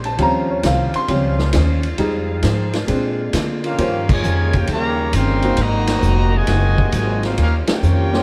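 A brassy, swinging big band recording heard from further back in a room with light reverb, cut from a longer piece in Eb mixolydian at 133 BPM with a swing feel. A clear, woody, slightly detuned upright piano takes a solo over the opening 3.8 seconds, backed by a pizzicato upright bass up front, a vintage kit with dark cymbals and a tight kick, a very quiet picked acoustic guitar with finger squeak, and soft sustained chords from a smooth saxophone section. At 3.6 seconds a tight trombone section enters on a second line, and the brilliant trumpet section takes the melody at 3.7 seconds, with full-band accents at 4.0 and 7.6 seconds over chords moving from Eb13 to Ab13 and back.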